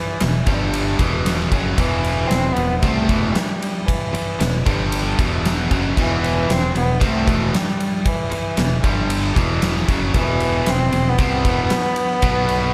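Quiet-loud alternative rock with a cathartic, angsty mood, this cut from a longer piece sets an intense, nasal bowed cello melody with light vibrato and slapback echo up front over a cranked, overdriven stack guitar riff, a tight distorted guitar tucked in the background, a growling overdriven fingered bass, and a huge arena drum kit with a fat snare, punchy kick, crash and ride, all alternating between G5 and Em chords inside a lush hall reverb and big arena sound.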